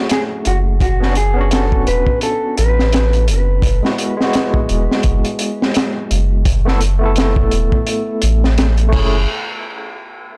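A soft, round dub sub bass sits up front in this melancholic, hypnotic trip hop excerpt, entering at 0.5 seconds and holding deep, sustained notes under a slow 85 BPM groove with a swung sixteenth-note feel. A crunchy breakbeat drum kit plays from 0.1 seconds, its punchy kick, high-tuned snare, hi-hat and dark crash cymbals sounding saturated and gritty with a rolled-off top, as if captured in a small room. A barky tine electric piano carries the accompaniment through overdrive, tremolo, a low-pass filter and tape echo, with a filter sweep running across its part. A dark, clean electric guitar plays a brief fingered melody at the opening, dusted with vintage sampler grit and tape echo, before stopping at 3.2 seconds. The harmony moves through F#m7, Bmadd9, Eadd9 and Asus2 before returning to F#m7, and the whole recording has a blown-out, overdriven character that adds to its hazy weight.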